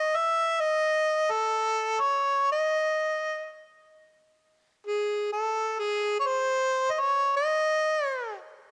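A warm harmonica plays alone and up front from 0.0 to 8.3 seconds in this brief fado fragment, its longing, passionate solo moving in rubato around 85 BPM in 4/4 between G#4 and E5 with light vibrato, tongue slaps and scooped notes in a jazz style, colored by cassette tape and set in light reverb with the studio ambience of a home cassette recording.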